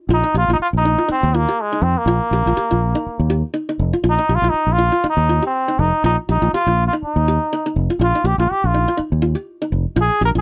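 Afrobeat at 122 BPM with a driving, intense 16th-note swing, this short cut from a longer piece sets a brilliant, vintage solo trombone with light vibrato up front over a round, punchy fingered electric bass and the bright-edged arpeggios of a fingerpicked, triple-strung qanun, all alternating between Bb chords (mostly Bbsus4, once Bb5) and Fsus2 in a dry, close 1970s-style studio sound.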